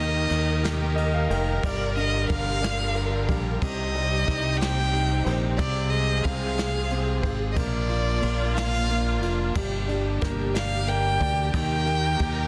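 In a gently swaying six-eight lilt, this heartfelt, romantic pop ballad excerpt sets an expressive solo violin, singing with vibrato and portamento, over an intimate concert grand piano with audible action noise and long sustain, which adds a fill at 0.6 seconds; lush, distant symphonic strings hold sustained chords, a round, punchy fingered electric bass sits up front, a brushed jazz kit with dark cymbals and a boomy kick enters at 0.3 seconds, and a shadowy French horn section with digital delay briefly surfaces in the background at 9.2 seconds, all in light small-room reverb under a dense, heavily limited modern master.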